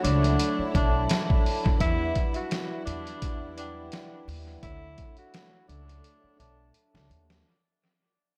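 Dark and reflective, this short boom-bap hip-hop passage, cut from a longer piece, moves at 85 BPM in 4/4 with a gentle 16th-note swing, fading out across its 7.5 seconds over chords shifting from Dmaj9 to Em9 at 1.8 seconds and back to Dmaj9 at 4.6 seconds. Up front, a gritty, compressed, pitched-down sampler-style drum kit pairs a thumpy kick with a medium-tuned snare and hi-hat, its tape-warm sound re-recorded in a small room and trailed by dub echo, with a drum fill from 6.0 seconds. Beneath it, a woody pizzicato upright bass on gut strings sits low and dark between B1 and F2. A breathy tenor saxophone carries the melody in a whispered, intimate subtone with light vibrato and a vintage jazz feel, its phrases echoing in dub fashion until it drops out at 6.7 seconds. A soft-mallet vibraphone rings with a slow motor vibrato and a mellow, metallic shimmer, while a bowed string section plays sustained sul tasto chords softly in the background. 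The whole mix is bathed in an echo-heavy studio ambience.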